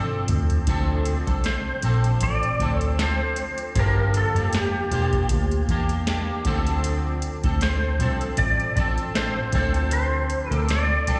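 Wistful, hazy indie bedroom pop with a loose swing, cut from a longer piece and set in a live gig sound heard through the venue's PA with recital-hall reverb. A bright, compressed lap steel carries the slide melody with volume swells, chorus and slapback echo, over a twangy, slightly broken-up electric guitar whose chorus, slapback echo and warbly pitch drift lend a woozy sheen. At 0.3 seconds a soft analog rhythm box with a deep kick, crisp snare and metallic hats enters on a short fill, joined by a dark, round, foam-muted picked bass sitting up front as the chords move between Dm7 and Gm7.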